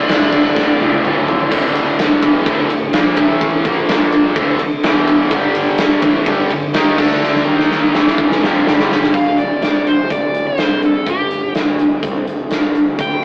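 A huge arena drum kit, up front with a punchy kick, medium-tuned snare and bright cymbals, drives this menacing hard rock excerpt in D minor at 126 BPM, with fills around 0.6 and 7.2 seconds. Three picked electric guitars (a cranked, overdriven stack, a high-gain distorted one and a very quiet double-tracked one) churn out riffs in the background until 9.1 seconds, over a fuzzy, overdriven bass that runs throughout. A dark, smooth lead guitar carries the melody up front briefly at the start and again from that point to the end, heard through a rough rehearsal-room sound with an AM radio tint and moderate reverb.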